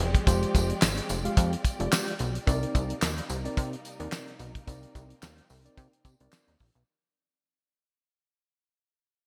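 Bright, polished eighties-style digital production with light small-room reverb frames this slick, funky boogie funk excerpt, which fades out across its full 6.9 seconds. Up front, a dry, fat-snared 70s drum kit with handclaps, hi-hat and a tight kick carries gated reverb beside a punchy, plucky analog bass with a fast-attack filter pluck and a ring-modulated edge. A clean, mellow tine electric piano accompanies as the harmony moves from Fm69 to Cm9 at 2.5 s, while a lush bowed string section with vibrato and a jingly, saturated tambourine sit in the background.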